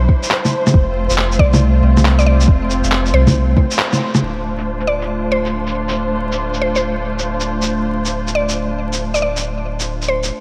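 A woody, detuned mallet-like synth pluck enters at 1.4 seconds and carries the melody with chorus and tape echo, floating over a wistful, rainy future garage groove at 138 BPM in D minor with a 16th-note swing. Dark, con sordino strings hold pumping, low-pass filtered chords over a round, deep dub sub bass. A breathy, wind-like noise texture sits very quietly beneath. A soft kick drives the opening before dropping out at 3.7 seconds, while muffled, pitched-down shaker, handclaps and bongos continue under a drum filter sweep from 4.2 seconds, all bathed in lush hall reverb and vinyl crackle.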